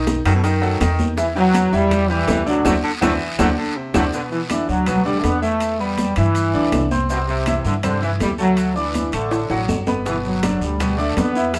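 Moderate room reverb gives this short salsa excerpt the sound of a band playing live together, joyful and sunny in mood. A brilliant grand piano with audible action noise and long sustain shares the accompaniment with an upright bass on gut strings, plucked, woody and thumpy, both present from the start. Congas with a thick skin, ringing metal-shelled timbales and grainy, distant maracas sit in the background, joined by a close, raspy guiro and very quiet vintage-sounding claves. A clear baritone saxophone with vibrato adds a second line in the opening seconds, and tight, high-tuned bongos sit very low in the mix, dropping out after 4.0 s and returning at 10.1 s. From 1.2 s a punchy trombone section carries the melody up front, tight and smooth on top with a light vibrato. A drum fill and a band accent mark the end of the opening passage, and another fill comes later on.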